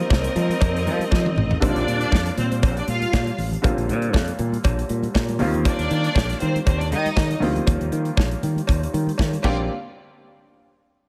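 A light reverb and a small room ambience frame this celebratory, danceable disco clip, cut from a longer piece. A ringing vibraphone struck with medium hard mallets, motor off, sounds a brief melodic note in the background, heard only until 0.8 seconds. Up front, the acoustic drum kit brings bright cymbals, a medium-tuned snare and a punchy kick, with a drum fill from 1.1 to 1.6 seconds, while a growly fingered electric bass sits just as close. A lush, bowed string section with vibrato and a smooth top carries a second line, and a clear grand piano with short sustain fills in the accompaniment over chords that move from F9sus4 to Bb69 and Eb69. Very quiet, damped congas with a thick skin and a metallic cowbell in the background add percussion until about 9.7 seconds.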